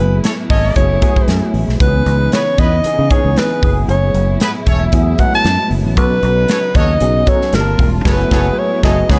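Over a lightly swung 16th-note groove at 115 BPM in 4/4, this slick, bittersweet 1980s jazz-funk pop fragment puts a clear, close-miked alto saxophone with light vibrato and tape echo up front, backed by a worn, slightly out-of-tune tine electric piano with overdrive and ensemble chorus, a round fingered electric bass, a polished drum kit with a punchy kick and bright cymbals and a distant, tight horn section in octaves that both enter at 0.2 s, and a very quiet, lush bowed string section with portamento, over F#m11, C#m9, B9 and Gm11 harmony in a dark production that closes on a band accent at 8.1 s.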